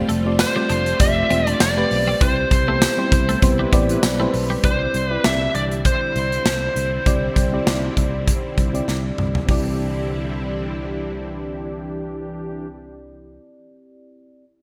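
Uplifting and glossy, this short slice of 1980s-style pop moves at an easy mid pace with a light swing, cut from a longer piece and moving from Fadd9 to Cmaj7 and then Cadd9. A mellow FM electric piano, round and warbling under a chorus, carries the accompaniment beside a string machine of violas whose slow-attack sawtooth chords sit in the background, while a fretless electric bass gives a punchy, amped low end. A clean twelve-string electric guitar plays a compressed, chorus-and-delay riff in the background during the opening, and a very quiet, jingly tambourine adds shimmer in the first few seconds. Up front, a biting lead guitar with overdrive and delay sings the melody, and the modern studio drum kit, with its punchy kick, medium-tuned snare and gated reverb, drives the groove until a drum fill at 8.9 seconds. Fat, nasal analog synth brass stabs arrive with a filter sweep and vibrato, returning at 9.5 seconds as the band thins toward the end. 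The bright digital production is finished with a moderate plate reverb and studio ambience.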